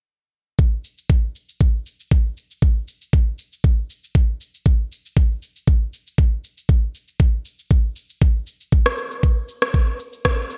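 An up-front electronic kick drum with a knocking character anchors this afro house excerpt, running from 0.6 to 10.4 seconds at 118 BPM in 4/4 with a 54% swing on the sixteenths. Beside it, an electronic shaker and rim click sit lower in the balance yet still close, their sound treated with gated reverb. Both percussion parts carry the ambience of a large room, while the overall production stays fairly dry and bright in a 1980s digital style. The mood leans spiritual and warm, built entirely from these produced drum sounds across a single section.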